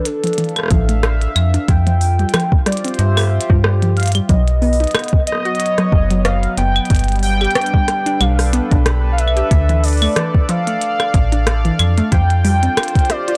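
A dry hardware recording with transformer saturation and cassette tape colour frames this wistful, playful IDM piece, cut from a longer work, at 92 BPM in G mixolydian with a light 16th-note swing. A velvety, wave-folded synth lead sings the melody with vibrato, chorus, tape echo and 12-bit sampler grit over a dark, slow-attack analog pad, while a warbling lo-fi pluck spins mellow arpeggios from 0.2 seconds. Clicky electronic drums of claves, hi-hat and rim click sit around a soft, up-front kick and a metallic FM bass that both enter at 0.7 seconds, as the chords move through Dmadd9, Fsus2, B and G.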